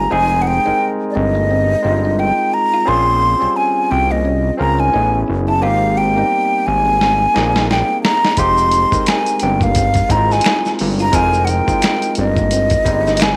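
A digital ambience surrounds this introspective, sultry neo-soul and R&B excerpt in F minor, moving at 87 BPM with a swung sixteenth-note feel over chords that drift from Fm9 through Bbm9 and back. Up front, a breathy, hollow metal jazz flute with vibrato and slapback echo carries the melody over a barky, bright tine electric piano, a very quiet, slightly broken-up picked guitar through a small old amp, and a fat, detuned sawtooth analog bass with a filter sweep. A dusty, gritty sampler-style drum kit with a thumpy kick enters with a fill at 7.0 seconds, and vintage, band-limited tube shaker and finger snaps join in the background at 8.4 seconds.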